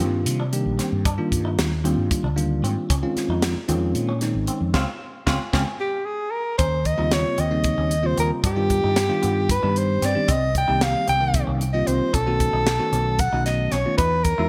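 Electric jazz fusion in 7/8 at 227 BPM counted in eighths, this funky, soaring passage, cut from a longer piece, sits in Eb mixolydian with a bright 1980s-style digital sheen and light small-room reverb. A bell-like tine electric piano treated with phaser lays down the chords from the start, moving from Ebmaj9 to Dbmaj9, while a clean, twangy electric guitar adds compressed, picked stabs bathed in lush chorus. Underneath, a mellow fretless bass with analog chorus gives a dark, round, punchy low end, and a crisp fusion kit drives things with a high-tuned snare, punchy kick and hi-hat, placed up front in an airy, polished studio room. The band hits an accent from 4.7 to 6.6 seconds, and a mellow soprano saxophone enters at 5.8 seconds as the up-front soloist, singing with light vibrato, scooped notes and a smooth top. The second section passes through Eb13, G7b13, Cm7 and B7 before landing on Emaj7 at 14.0 seconds.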